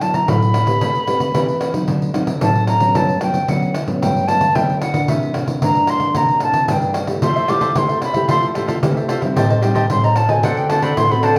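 A straight 4/4 samba and choro groove is carried by a jingly pandeiro, struck with hard hands and sitting up front in a live room sound. Over it, the concert flute takes a sunny, playful solo through the whole passage, its airy, tongued tone colored by vibrato, both close and slightly distant in the mix. A classical nylon-string guitar, thumb-plucked with a warm, acoustic body, supplies the harmony beneath, moving through jazzy chords such as D69, Gmaj7#11 and Fmaj9. At 7.2 seconds a crisp, picked cavaquinho joins the accompaniment, adding a warm acoustic voice near the top of the texture. The band plays together in one large studio with a wet reverb, and the passage is cut from a longer piece.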